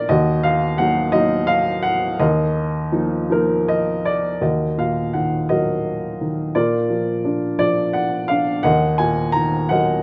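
A dark, woody upright piano plays alone and up front, its mellow, vintage tone spanning Eb2 to Bb5 in a wistful, reflective classical piece in 6/8 with flexible rubato. Set in a moderate recital hall reverb, this short cut from a longer work moves from an opening passage into a second section at 4.4 seconds, its harmony settling back on E-flat minor at 8.6 seconds.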